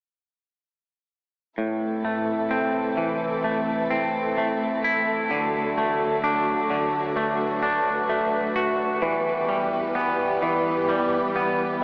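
At 1.6 seconds, a twangy, clean electric guitar sits up front playing arpeggios through spring reverb and tape echo, over sustained chords from a dark, woody string section bowed with vibrato. This melancholic, cinematic rock piece moves at a slow 64 BPM through A minor, D and E minor. At 9.0 seconds a very quiet felt-muted upright piano adds soft, intimate arpeggios, all within a dreamy mix soaked in a huge ambient reverb with a small-speaker sound.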